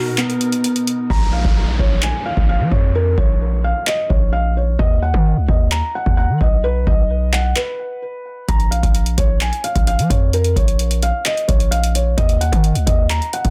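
A felt-muted upright piano, soft and dark with audible action noise, carries the melody through low-pass filtering and digital delay in this menacing half-time trap hip hop piece at 130 BPM in Bb phrygian, opening over a brief lush, bowed symphonic string section as an overdriven analog drum machine with a deep kick, handclaps and metallic hats enters at 0.2 s, joined at 1.1 s by a punchy, heavy sine-based 808 bass and an electronic downlifter, set in digital ambience within a dense, heavily limited modern master.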